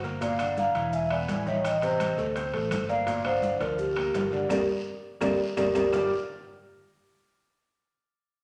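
A ringing, soft-mallet vibraphone carries the melody over a breathy, hollow flute second line in this sultry, fiery Afro-Cuban jazz clip in G minor at 168 BPM, backed by clear grand piano accompaniment, a direct, amped fingered electric bass, bright congas, vintage metal-shell timbales, woody claves, a raspy guiro and grainy maracas, all set in a large studio reverb, with a drum fill and band accent from 4.5 to 5.9 seconds.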